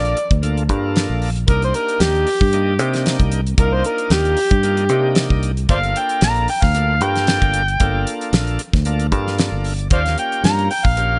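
An overdriven harmonica leads this straight-eighth soul blues in G minor at 114 BPM, carrying a smoky, mournful melody over a bright tonewheel organ and a fingered electric bass, with a damped 70s drum kit joining almost at once. The amplified harmonica sits up front with a gritty, jazz-style solo voice, full of vibrato, tongue slaps and scooped notes. Behind it, the organ shouts with key click and light overdrive through a slow rotary speaker, and it steps forward with a short fill from 8.9 to 9.9 seconds. The bass is dark and round, heard direct and amped, while the dry acoustic kit pairs a fat snare and tight kick with hi-hat in an airy, polished, close sound. The harmony moves from Gm7 to Cm7, back to Gm7 and on to Eb7 at 9.9 seconds, in a dry room with little reverb and a muted top end, and the passage is cut from a longer piece.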